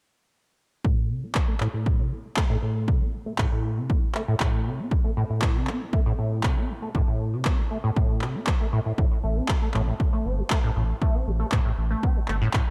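At 0.8 seconds, a squelchy, resonant acid bass riff and a punchy analog kick drum start together, both up front, setting a raw, driving acid house groove at 118 BPM in straight 4/4, in A minor over a single Am chord and tuned to A4 = 442 Hz. The sawtooth bass line, ranging from A2 to C4, has a fast attack and a decaying tail, and a filter sweep runs across its full length, while tube saturation, lush chorus and delay give it a smooth, liquid sheen. Tape-colored electronic handclaps join at 1.3 seconds, sitting lower in the mix beside the kick. At 9.2 seconds, a deep, thick, saturated sine sub bass arrives up front, sustaining between G1 and A1 with sidechain pumping. Light reverb places the parts in a modest space, and this excerpt is cut from a longer piece.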